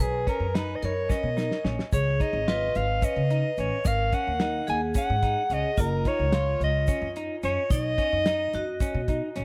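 Progressive instrumental band music in 7/8 with a straight feel, this bright, intricate passage moves at 218 BPM counted in eighths and is cut from a longer piece. A breathy soprano saxophone carries the melody up front in a mellow jazz style, with vibrato, scooped notes and a dub echo trailing its lines, while a vibraphone struck with hard mallets adds a ringing, metallic second line with slow motor vibrato. Pizzicato upright bass sits up front with a woody tone, and a damped 70s drum kit plays hi-hat, kick and snare with a dry, dark sound, a fat snare and a tight kick, breaking into a fill at 1.1 seconds. A clean electric guitar enters at 0.3 seconds with picked arpeggios under a subtle chorus, and a grainy, saturated tube shaker joins in the background from 1.1 seconds. The harmony moves from Cbmaj7 through Db7, Ab5 and Gb5 to Cb, and the whole sits in a small room with light reverb in an echo-heavy mix.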